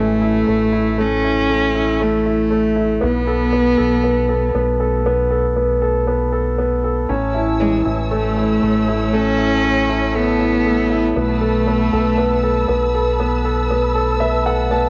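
Heard through the light reverb of a small room on a home cassette recording, this heartfelt, emotional pop fragment sits in A major at a slow 59 BPM in straight 4/4, tuned to A4 = 437 Hz. A rich, bowed cello with vibrato carries the melody up front until 12.7 s, over clear grand piano accompaniment and a round, punchy fingered electric bass; the cello and piano both carry a cassette tape colour. From 7.1 s a distant, lush studio string section adds sustained bowed chords with the same tape tint, and the piano closes with a fill at 13.7 s.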